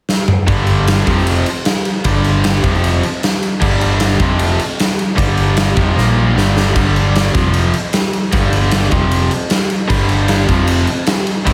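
Heavy and driving, this hard rock excerpt moves at 153 BPM in a straight 4/4, opening with a drum fill from the big, up-front kit before two bright picked electric guitars, one cranked and overdriven, the other scooped and high-gain distorted, enter at 0.5 seconds alongside a dark, round, hollow-body bass. The guitars riff on power chords rocking between G5 and F5, with a Bb5 at 6.0 seconds as a second drum fill hits, while the punchy kick, medium-tuned snare, crash, ride and toms drive beneath. A moderate lush hall reverb gives the whole a big arena sound, cut from a longer piece.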